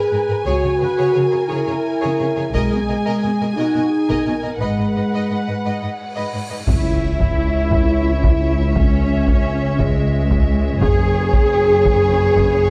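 A dark, epic orchestral film-score cue in 6/8 opens with lush, vibrato-laden violins carrying a focused melody over a rich, expressive second violin line, woody violas in the background, tight sustained French horn chords, smooth cellos and an even double bass section, then heavy, close, dry taiko drums enter at 2.5 s, a huge, bright cymbal swell lands on an impact at 6.7 s, and a mellow, close-miked tuba joins the bass from that moment, set in a moderate recital-hall reverb.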